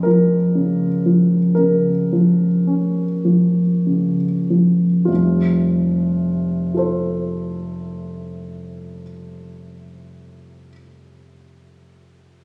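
A lone concert grand piano opens on a Bb minor chord over an F bass, its deep low register and short sustain placed up front in a moderate recital hall reverb. This tender, serene fragment of a longer romantic nocturne moves in a very slow, rubato 4/4, roughly 31 to 41 BPM, tuned to A4 = 442 Hz. The playing slows through the first 5.1 seconds, and at that point the harmony settles onto a plain F major chord to begin a second passage that lasts until 11.8 seconds. The piano spans from F1 up to C5, keeping its warm voice in the middle and lower range. Captured on a phone in the room and then given studio reverb and compression, the sound carries a close, intimate character as the piano plays alone until 12.4 seconds.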